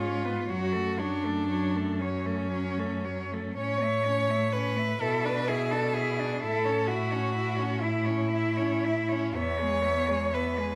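Classical and lyrical, this solemn, yearning fragment from a longer piece for a cello ensemble moves in a rubato 6/8, with a soft-attacked, expressive melody cello sliding with portamento over a smooth, close, up-front second line and bass, while a focused, more distant accompanying cello adds vibrato-rich inner voices through a recital-hall reverb as the harmony passes from F#m through A and E.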